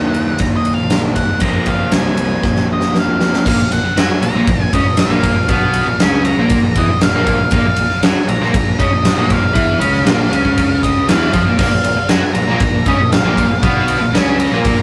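A dark, fuzzy octave lead guitar opens this excerpt with a solo over a crunchy, double-tracked overdriven guitar riff and a growling fuzz bass, setting a brooding, angsty tone in Bb minor. This quiet-loud alternative rock piece moves at 118 BPM in a straight 4/4, with the harmony passing from Ebm to Fsus4 before landing on Bbm at 3.5 seconds. A huge arena drum kit sits up front, with a fat snare, punchy kick and bright crash and ride cymbals, and its fill at 2.4 seconds leads into the second section. The bass stays in the background, overdriven and direct with a bright edge. A second distorted, double-tracked guitar riff joins in the background at 11.6 seconds and thickens the sound. The whole thing has the rough, loud feel of a rehearsal room with light reverb.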